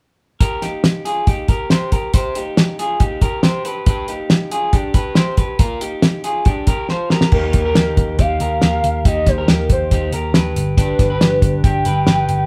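Lightly reverberant, this sounds like a band playing live in one room, with a cloth-damped, thuddy drum kit sitting up front, its fat snare, tight kick and dark cymbals smoothly rolled off at the top. It's a youthful, nostalgic slice of jangly indie pop at 139 BPM in a straight 4/4, set in Eb major and cut from a longer piece. From the start, an electric guitar through a small old amp picks arpeggios that sound slightly broken-up, over chords moving from Eb to G to Bb. A drum fill at 6.9 seconds leads into the second part at 7.3 seconds, where a vintage, foam-muted picked electric bass enters with a round, amped tone. At the same moment a warbling lead arrives, mellow and sustained with a soft attack, its triangle-and-sawtooth voice colored by chorus, tremolo and vibrato as the harmony returns to Eb and passes through Cm/Eb to G.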